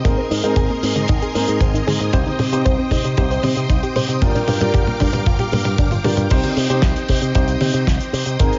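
Italo disco with a danceable, melodramatic air, built on a tight, dry kick and a damped 70s drum kit with a fat snare and a drum fill through the first 6.3 seconds, a bright, punchy picked electric bass with an envelope filter and delay, a dark, boxy baby grand piano with audible action noise playing filtered stabs, a soft, nasal pluck arpeggiating in the background with chorus, tape and shimmer reverb until 6.1 seconds, and a lush vintage string machine holding sustained chords through Abadd9, Cm and Gm7 before returning to Cm.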